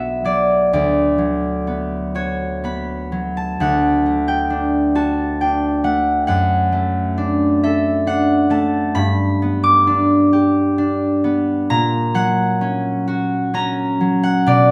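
Set in a moderate stone-room reverb, this serene, dreamy classical excerpt features a solo concert harp, fingerpicked, ringing and up front, drifting in a rubato 3/4 through Bm, D and G before resting on F#/A# at 11.7 seconds.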